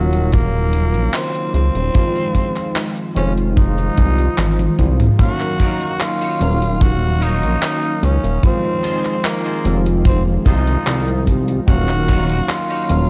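A raspy, vibrato-laced tenor saxophone carries the melody with 12-bit sampler grit and tape echo over warbly, detuned lo-fi synth keys, a glossy chorused pulse-width synth bass up front, a punchy kick and a gated 80s drum machine of cabasa, handclaps, hi-hat, toms and crash (with a fill at 4.4 seconds), and a bright, clean picked electric guitar riff that enters in the background at 5.4 seconds, all in a hazy, woozy vaporwave groove at 74 BPM in Eb dorian, moving between Ebm9 and Fm7 in a dark small-room production.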